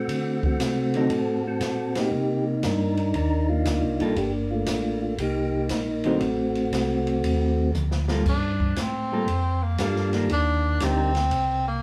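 Heard from further back through a wet studio reverb, this short slice of a late-night, smoky soul jazz organ trio swings at 118 BPM in G minor. An up-front, percussive tonewheel organ carries the melody through a slow rotary speaker over a round, dark organ bass line with chorus vibrato, and a clean hollow-body electric guitar adds picked accompaniment over chords such as Cm9, Gm9 and D7b9. A natural-sounding acoustic drum kit with dark cymbals and a boomy kick marks a band accent at 1.9 s and a fill at 7.7 s, and from 8.3 s a breathy tenor saxophone takes a solo full of subtone, scooped notes and vibrato.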